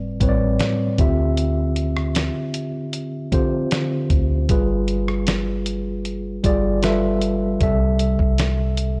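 A slow, straight 4/4 groove at 77 BPM sets up this late-night, longing slice of contemporary R&B, cut from a longer piece and running about nine seconds. A dusty soul sampler-style drum kit enters at 0.2 seconds with hi-hat, a thumpy kick, a medium-tuned snare and rim click, its sound compressed, gritty and tape-warm, re-recorded in a large room yet sitting up front. Beneath it, a soft 808-style bass plays from the start, deep, round and sine-like, with a fast attack that decays into a dark low end. A mellow tine electric piano carries the accompaniment, clean and direct at the front of the mix, voicing lush extended chords that move from Am11 to Dm11, then G7b9 and G13 before settling on C6 at 7.6 seconds. The overall sound is dry and rough-edged, a hardware recording with little reverb that gives the late-night mood a close, grainy character.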